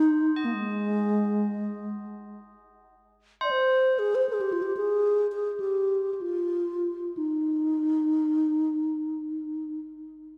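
An airy, mellow bass flute carries the melody up front, its vibrato and crisp attack giving the line an expressive voice, trailed by a diffuse ambient delay. Beneath it, tubular bells struck with a plastic hammer add a bright, metallic, solemn ringing from a close, dry pickup, and they sound on alone after the flute stops at 9.8 seconds. This calm, peaceful world meditation music moves in free time, tuned to A4 = 438 Hz, with a dark production and a wet reverb that lends the short cut from a longer piece a quiet sense of space.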